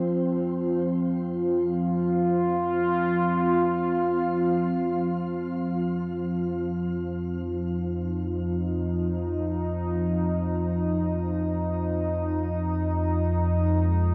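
In free time, this dark ambient drone drifts with an unsettling, ominous mood, cut from a longer piece and soaked in a huge, wet reverb that gives the dark production a cavernous depth. A sweeping, resonant sawtooth pad sits up front with bright, detuned chords and a chorus-and-shimmer reverb haze, evolving from an F5 chord to Ab5/F at 12.4 seconds while fading out across the full 14.1 seconds. Beneath it, a deep, rumbling wave-folded drone holds a low F2, fading in over the same span with its own built-in reverb.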